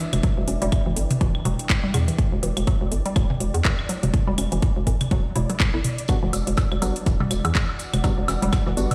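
A punchy, up-front electronic kick drum anchors this short minimal techno excerpt at 123 BPM in E minor, with a 16th-note swing and a sparse, clinical mood over a single Em7 chord. Beneath it, a hollow, bouncy FM bass knocks with fast attack and sidechain pumping, while a hollow, detuned square-wave pluck carries the riff through chorus, phaser and dub echo. A house kit adds metallic hats and handclaps with a tape-warm, small-room character, and dry analog toms, claves, bongos and woodblock scatter dub echoes around the groove. Far behind, a deep, moody sawtooth pad with wave-folding and ring modulation sustains alongside a flickering, grainy granular texture, both breathing with sidechain pumping. At 6.1 seconds a dark, percussive organ stab arrives with chorus and echo, joined by a soft brush kit whose fat snare and rolled-off top sit in the background, all heard as if played on a big sound system in a bare stone room.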